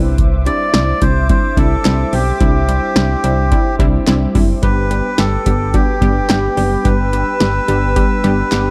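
Melancholic and cool, this short synth-pop excerpt moves at 108 BPM in a straight 4/4, its harmony shifting from Cadd9 to G at 4.6 seconds. A solid FM bass sits up front with a punchy, round, dark tone and decaying notes, while an electro analog drum machine enters at 0.2 seconds with a deep kick, punchy snare, metallic hi-hats and handclaps, all kept dry. A unison pluck fills out the accompaniment with a lush, detuned sawtooth sound, a noise layer and a snappy filtered attack. Above it, a soft-attack analog pad holds smooth sustained chords with chorus and a long release. From 0.5 seconds a close-miked melodica carries the melody, reedy, breathy and nasal, with analog delay trailing its notes. Light reverb and a dark, warm production round out the mix.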